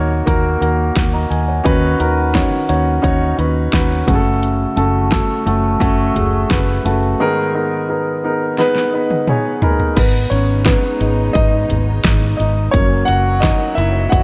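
A warm concert grand piano carries the accompaniment in this anthemic, uplifting piano-driven pop passage, cut from a longer piece, with a deep bass register placed up front. A foam-muted, fingered electric bass runs beneath it from the start, dark and round through an amp. A layered, produced, tape-warm pop drum kit joins at 0.3 seconds, with a punchy kick, a fat snare, warm hi-hats, crash cymbal and toms, re-recorded in a large room and sitting up front. Piano and drums both play fills from 8.6 seconds, and at 10.0 seconds the piano moves into a solo as a woody string section enters in the background with bowed, lush sustained chords, vibrato and a smooth top. The harmony travels from D#m through Badd9/D#, F#m and G#madd9 before arriving at G#m and F#, all framed by light reverb and digital ambience.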